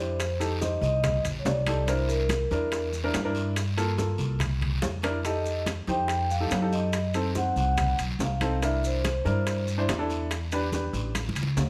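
Light reverb wraps this lively, sophisticated Afro-Cuban jazz fragment in 4/4 at 142 BPM in C mixolydian, with a woody pizzicato upright bass and a warm upright piano sitting up front. A ringing, metallic vibraphone played with soft mallets and its motor off carries the melody until 9.7 seconds, while the piano comps through chords such as F7, Gm7 and F#dim7 before dropping out at 11.2 seconds. Underneath, tight high-tuned bongos, medium-tuned congas and grainy maracas sit in the background, joined by a raspy guiro and close, dry metal-shell timbales, with short drum fills at 4.8 seconds and again at the end.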